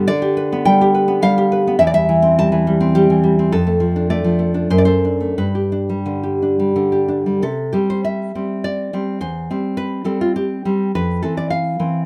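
A triple metre, pushed and pulled by rubato, carries this romantic piece for solo classical guitar, an excerpt from a longer work with a warm, nostalgic mood. The fingerpicked nylon-string guitar sits up front with a dark, full-bodied tone, spanning from deep bass notes to high treble and drifting from G7/D through Dm/F and D7/F# before settling on G. At 7.4 s a new passage opens on C, moving to C/E and closing on F5 at 10.9 s, all framed by a moderate studio reverb.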